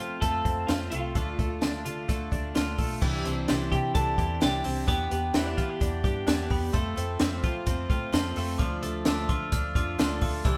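Jangly indie pop at 129 BPM with a nostalgic, youthful mood, this excerpt has a band playing live in one room under moderate studio reverb: a clean, hollow-body semi-hollow electric guitar carries the melody until 6.5 seconds over a boxy, shimmering, octave-doubled twelve-string acoustic guitar with audible finger squeak, bright, twangy, compressed arpeggios from a twelve-string electric guitar, and a round, foam-muted vintage fingered bass, while a dry, up-front cocktail drum kit with dark cymbals, a high-tuned snare and a punchy kick enters at 0.2 seconds and a bell-like glockenspiel struck with brass mallets rings in the background from 3.0 seconds, all moving through F, Dm, Cadd9 and Em7.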